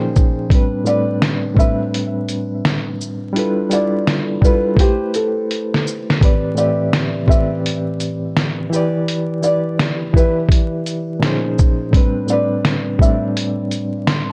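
This lo-fi hip hop excerpt in A minor moves at a reflective, hazy 84 BPM in 4/4 with a 65% swing on the sixteenths, with light reverb and vinyl crackle coloring the sound. A reedy, bright electric piano with fast tremolo and a low-pass filter carries the chords up front from the start. A compressed, pitched-down sampler kit with a thumpy kick, fat snare, hi-hat and shaker sits equally forward, muffled as if re-recorded in a small room, and drops a fill at 5.5 seconds. Over them a soft, felt-muted upright piano, mellow and intimate with audible action noise, plays the melody through tape echo from 0.9 to 13.2 seconds.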